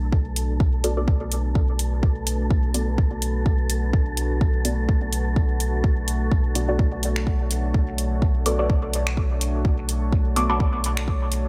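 The recording is dry and close, with a deep, up-front kick and a clean, smooth sine sub bass anchoring a hypnotic, hazy stretch of dub techno in a swung 4/4. A dark, moody pad of sustained chords enters with a slow attack and long release, thickened by chorus and its own reverb, while a breathy, wind-like noise texture hovers alongside it in its own reverb. From 0.4 seconds a deep house kit adds finger snaps and shadowy hi-hats. At 0.8 seconds a muted, detuned chord stab enters with short, plucked notes, its filter sweeping across the whole passage as phaser and dub echo trail behind it. Sidechain pumping runs through the pad, bass, texture and stab, giving this section of a longer piece a steady, pulsing sway around a single Bm7 chord.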